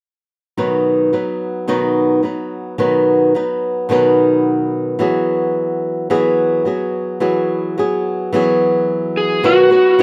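A fingerpicked acoustic flamenco guitar sits up front in this carefree, heartfelt pop clip at 108 BPM with a light sixteenth-note swing, moving from B to Eadd9 as a warm, overdriven electric slide guitar played with fingerpicks enters at 9.2 s, just before the return to B, all set in a wet small-room reverb with the rough feel of a home demo.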